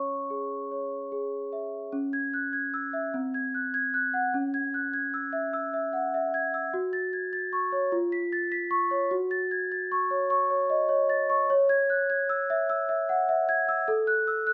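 Innocent and dreamy, this classical lullaby in a gentle 6/8 is carried by a solo large celesta whose bell-like, sweet and vintage tone sits up front with a slapback echo in a dry, open-air sound, moving through a brief opening phrase into a longer second section from 1.9 seconds in this fragment cut from a longer piece.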